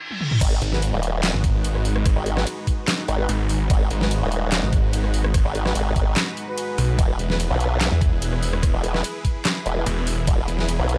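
A snarling, growling distorted saw bass and a formant-swept wobble bass lead this chaotic, heavy half-time wobble dubstep excerpt at 146 BPM in G# minor, crashing into the drop at 0.4 seconds after a brief drum fill, with a knocking, tape-tinged electronic kick and an overdriven dubstep kit of deep snare, bright hats, claps, rim clicks, toms and cymbals driving beneath a lush, sidechain-pumping unison pad with phaser and 12-bit grit, while a mellow, distant brass ensemble adds echoing stabs in the background over G#m7 shifting to E at 7.0 seconds.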